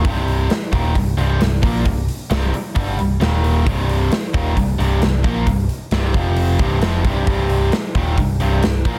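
A growly, punchy picked electric bass sits up front in this driving, menacing hard rock fragment in C minor at 133 BPM, alongside a big acoustic drum kit with a punchy kick and medium-tuned snare and two bright, tight distorted guitars playing a picked riff over a Cm chord that briefly shifts to Eb5 and F5, one guitar tucked into the background, all within light small-room reverb and a dense, heavily limited modern master.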